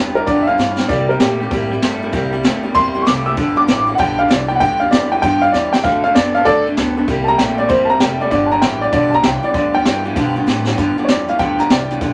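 A rowdy, retro rockabilly excerpt opens on a swinging groove with a twangy, slightly broken-up electric guitar riff through a small old amp, a bright, full-bodied picked dreadnought acoustic guitar in the background, and a woody, thumpy pizzicato upright bass moving through G7, C7 and D7 changes. An intimate, slightly detuned upright piano with audible action noise enters up front at 0.2 s and carries the melody as a solo until 10.8 s, while a natural-sounding brush kit with a high-tuned snare and boomy kick joins at 0.3 s and adds short fills. A moderate small-room reverb gives the band a lively, close sound as the music moves into a new section for its final moments.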